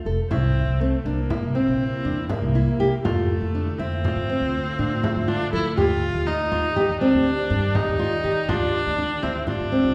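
Set in an uneven 11/8 metre with a straight feel, this restless, playful piece of contemporary chamber music is a short section cut from a longer work. A fingerpicked nylon-string guitar with fresh strings spins classical arpeggios, while a woody pizzicato upright bass anchors the low end. Up front, a single bowed viola carries the second line with a rich, smooth, even tone and vibrato. At 1.2 seconds an ethereal, airy pad eases in with sustained chords, its detuned, mellow texture thickened by ensemble chorus and its own reverb. A frame drum sits in the background with a small-room sound as the harmony moves through C7, F6, Ebmaj7 and Dm7, and the ensemble is heard from further back in a reverberant recital hall.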